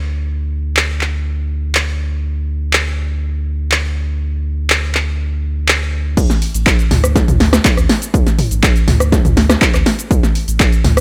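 Raw and gritty, this 122 BPM acid house excerpt opens on a deep, round sine sub bass with tube saturation, its sustained notes pumping under sidechain compression, joined at 0.8 seconds by a punchy, overdriven analog drum machine of handclaps, hi-hats, rim clicks, shaker, snare, toms and crash cymbal, with a short room on the snare, clap and hats. At the drop at 6.2 seconds, an overdriven electronic kick arrives up front and carries through to 10.7 seconds. The mix is dry, with little reverb.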